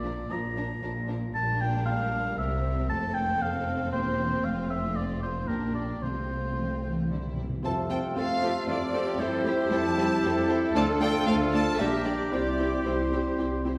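A spirited, lively classical-period movement for symphony orchestra in a quick 3/4 at 115 BPM in F major opens with a clear, intense violin section carrying the melody over a rich second violin line, a punchy oboe, woody violas, dark, lush cellos with portamento and smooth, even double basses, all set back in a wet recital hall. Hard-mallet timpani enter at 6.0 seconds with a crisp fill just before the second section begins at 7.6 seconds. There a vintage-toned clarinet, a distant bassoon, a roomy trumpet playing stabs, a very quiet pure flute ensemble and sustained French horn chords join the texture.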